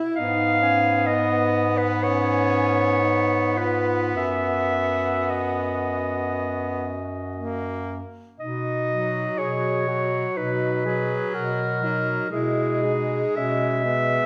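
Serene and warm, this rubato classical passage for single-reed quartet is cut from a longer piece, with the alto saxophone sounding a vibrato second line from 0.0 seconds before the others join at 0.2 seconds. The clarinet carries the melody, clear and up front, while the tenor saxophone adds a smooth-topped accompaniment with light vibrato. The bass clarinet grounds the harmony with a soft attack as the chords move from C#7/G# toward B and settle on E/B at 12.3 seconds, all within a moderate recital hall reverb that lends the alto and bass clarinet a distant, roomy quality.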